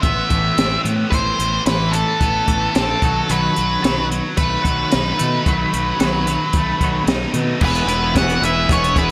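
Indie rock at 111 BPM in a straight 4/4 and E major, this brief fragment of a longer piece feels wistful yet carefree, moving from an Amadd9 chord to B7 before settling on E at 7.6 seconds. Up front, a dark, fuzzy octave-fuzz lead guitar carries the melody between A4 and F#5, soaked in distortion with slapback echo and digital delay. Beneath it, a bright, scooped high-gain guitar grinds out a riff with subtle chorus and echoes. A clean, twangy twelve-string electric guitar rings its own compressed riff in the background through analog chorus. A round, punchy fingered bass growls with overdriven fuzz, while a compact cocktail drum kit supplies a punchy kick, high-tuned snare, hi-hat and dark, rolled-off crash cymbals. At 7.6 seconds a very quiet, mellow combo organ adds sustained chords with light vibrato, joined at 7.7 seconds by a breathy, whispered trumpet line in the background, all set in a lush hall reverb that lends a big arena sound.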